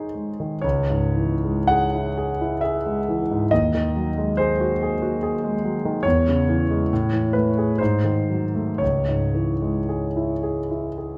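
Melancholic and yearning, this brief excerpt from a romantic classical nocturne unfolds in C# minor at a slow, rubato pace in 3/4, hovering between 54 and 74 BPM. A solo concert grand carries the whole passage, sounding intimate and up front, with deep bass and audible action noise, its range spanning C#2 to F#5. The harmony moves through C#m, G#7/D#, Amaj7 and a G#7b9 before settling back on C#m at 8.8 seconds, all bathed in a wet recital hall reverb.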